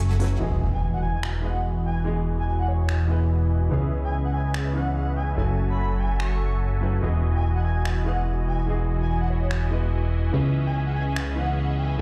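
A half-time future bass groove at 145 BPM in 4/4 sways with a light 16th-note swing, its big-room dance drum kit of finger snaps and crisp hi-hats sounding overdriven and layered, as if re-recorded in a large room. In E major, the mood is playful and bright, with huge, lush supersaw chords sustaining through a low-pass filter sweep over a progression that moves from Emaj7 through C#m9 and F#m9 and back. A fat, detuned analog bass sits up front, thick and saturated with a touch of ring modulation and its own filter sweep. A polished baby grand piano adds present, delayed accompaniment beneath, while a breathy, flute-like synth lead enters at 0.7 seconds with soft vibrato, chorus and delay, singing high in its C#5 to C#6 range. A very quiet electronic impact marks the opening at 0.4 seconds, and the whole excerpt blooms in large studio reverb, as though played on a big sound system in a bare room.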